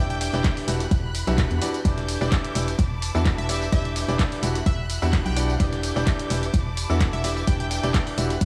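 Opening at once on a brilliant grand piano riff with tape echo, a hollow organ-like FM bass and a clear, focused violin section holding chords in the background, each of the three pumping to the sidechain, this energetic, bittersweet piano house cut in E minor at 128 BPM with a light swing soon adds a dry analog drum machine of handclaps, hi-hat and tambourine, a very quiet, gritty sampler-style kit with ride and snare, and an up-front punchy electronic kick by 0.4 seconds, while a catchy sawtooth unison lead with tape echo sounds briefly and returns at 3.4 seconds to carry the melody over Em7, Gmaj7/E and Bm7/E chords.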